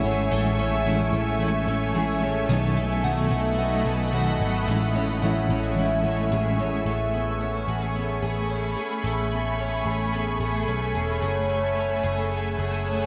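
Bathed in a huge, wet ambient reverb, this blissful, floating dream pop passage at 110 BPM in A lydian drifts over an up-front, shimmering pad with detuned, ethereal sustained chords while a bright, octave-doubled picked twelve-string acoustic guitar spins arpeggios through subtle chorus and delay. A round, punchy foam-muted electric bass anchors the low end, a mellow, clean electric guitar adds tremolo-tinged accompaniment and a very quiet FM bell glints softly, both dropping out around 7 seconds as the harmony moves from Amaj7 and B7 to Amaj9 and F#m9. The clip is cut from a longer piece.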